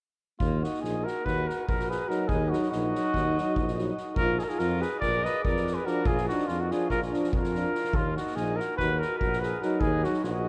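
A mellow, vintage-toned trumpet sits up front carrying the melody in this restless, bittersweet Balkan brass band passage in 9/8 at 287 BPM (eighths), set in Eb harmonic minor and moving from Ebm to Bb and back to Ebm. A smooth-topped alto saxophone with vibrato plays a second line beneath it, while a distant, roomy tuba with light vibrato holds the bass and an acoustic drum kit with soft mallets, a punchy kick and a medium-tuned snare sits far back in the mix. From 2.1 s, a clear euphonium in the background and a very quiet, warm second euphonium add accompaniment, all bathed in a vast, echoing cathedral reverb in this excerpt cut from a longer piece.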